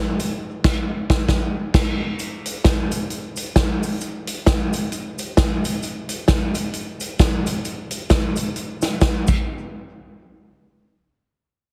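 A swinging big-band drum kit sits up front with a punchy kick, medium-tuned snare, hi-hat and crash cymbal in a natural big-room sound, alongside a very quiet, grainy cabasa in this cheerful, joyful ska fragment cut from a longer piece, with a band accent from 0.4 to 2.2 seconds, light reverb and a heavily compressed radio sound, the drums stopping at 9.4 seconds.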